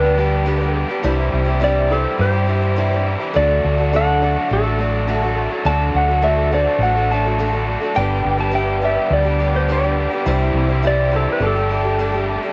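A clean, twangy lap steel carries a reflective, wistful melody over boxy ladder-braced acoustic guitar, background grand piano, a very quiet tonewheel organ with key click and fast rotary, an overdriven double-tracked garage guitar riff and a round, punchy short-scale bass in this 104 BPM folk and heartland rock excerpt, moving from G through Cadd9 and D, with the tape-worn home-recorded sound of a small room.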